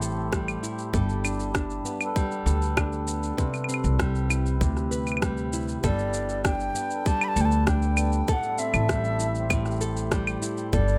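Folktronica with a hopeful, pastoral mood, this 11-second excerpt pairs a dark, fingerpicked nylon-string guitar's arpeggios and delay with a reedy, round accordion's sustained chords, a woody pizzicato upright bass with tube saturation up front, a tight electronic kick drum, and an electronic shaker, rim click and claves, all under light reverb, before an airy wooden flute with vibrato and a crisp attack carries the melody from 5.9 seconds over chords moving through Am7, Gadd9 and Cmaj7.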